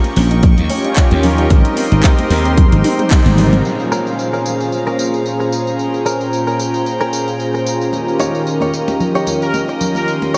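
Nu-disco with a sensual, sleek swing, this excerpt is steeped in dreamy cathedral reverb. A punchy, tape-toned electronic kick and a growly, saturated slap bass sit up front over an overdriven house kit with bright hats, handclaps, tambourine and toms, while soft-handed congas, a very quiet detuned unison pluck playing arpeggios, a chorused sawtooth analog pad and reedy, gut-string studio strings fill out the sustained harmony. After the drum fill, the bass and pluck drop out at 3.6 seconds, a twangy, clean direct-recorded electric guitar riff enters at 3.9 seconds, and a nasal, straight-muted trumpet section arrives with a brief delayed figure at 9.4 seconds.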